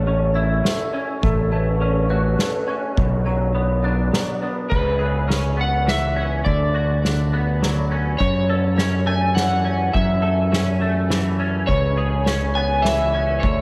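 A growling, overdriven electric bass sits up front with a bright, amped edge, anchoring this brooding, cinematic post-rock passage in a steady three-beat metre. Beneath it, a clean, compressed semi-hollow guitar picks arpeggios through ensemble chorus and a diffuse ambient delay, while an airy, ringing vibraphone adds metallic arpeggios in the background at the start and again from 11.7 seconds. A drum kit played with soft mallets keeps the pulse on boomy kick, a medium-tuned snare and dark ride and crash cymbals. At 4.7 seconds an electric slide guitar, played with fingerpicks and slightly broken-up, steps forward with the melody, coloured by analog chorus and its own ambient delay. Harmonies move from A and F#m/A through Bm into C#m7 and F#m7, and plate and small-room reverb soak the whole excerpt, cut from a longer piece, into a dreamy haze.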